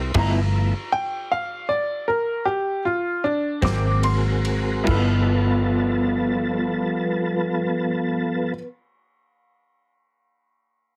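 A swaggering, rollicking slow blues in a straight 12/8 that slows over the first 4.9 seconds while a bright, woody, slightly detuned upright piano with audible action noise takes a solo over a smooth tonewheel organ with chorus vibrato and fast rotary speaker, a dark, round, foam-muted electric bass, slightly broken-up lo-fi guitar with tremolo, and a dry soul drum kit with a tight kick that drops out at 5.1 seconds, the whole fragment carrying light reverb and a heavily compressed radio sound as the chords move from G13 to Ab9 and back.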